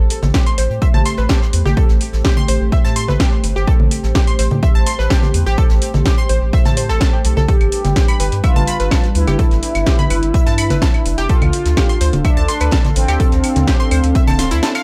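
Dry, with little reverb, this melodic techno excerpt moves at 126 BPM in a straight 4/4 in A minor, its mood melancholic and cinematic. A punchy electronic kick sits up front, joined by a techno kit of cracking snare, metallic hats, claves and congas, while a brushed jazz kit with a medium-tuned snare stays in the background, its high-passed hats pumping with the sidechain. A round, deep analog bass with a fast attack and a moody, full-bodied pad with a slow attack and long release both pump against the kick, the pad holding sustained chords from Am7 onward. A detuned sawtooth pluck with a noise layer and filter sweep spins arpeggios through chorus and digital delay. At 7.5 s, as the harmony moves to G and then Dm at 11.3 s, a bold, fat synth brass melody with vibrato enters, and the kick drops out at 14.6 s.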